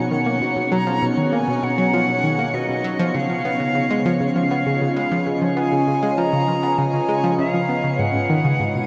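A straight 4/4 pulse at 99 BPM drives this short cut from a longer piece of ambient, sequencer-driven space music, expansive and hypnotic in mood. An up-front analog pluck carries the riff in the low register, its round, wave-folded tone with a filter sweep and a fast, decaying attack, thickened by chorus and analog delay. An evolving wavetable pad holds sustained chords that are mellow and morphing under chorus, phaser and shimmer reverb, moving from B to C#7 at 3.1 seconds and to G#m7 at 8.0 seconds. A silver concert flute sings an airy, expressive melody with vibrato and a soft attack, lifted by shimmer reverb and analog delay. Lower in the mix, a granular texture sparkles with octave-up shimmer, and the whole piece sits in a vast, echoing space with a huge reverb tail of 7.8 seconds.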